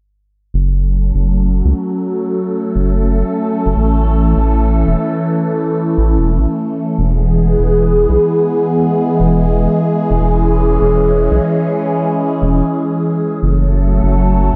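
Intricate and glitchy in mood, this IDM passage, cut from a longer piece, moves in a straight four-beat feel. A round analog bass sets off first at 0.5 seconds, deep, dark and up front, its fast-attack tones built from blended square, sine, triangle and sawtooth waves with a wave-folded edge. A phased analog pad joins at 0.8 seconds with sustained sawtooth chords, detuned and slow to bloom, swirling and evolving under phaser and chorus, and roughened by vintage 12-bit sampler grit that keeps its mellow body from sounding too clean. The harmony drifts from F#m through A and E before returning to F#m as a brief closing section begins at 13.4 seconds. A lush hall reverb soaks the whole mix in a dreamy, wet haze.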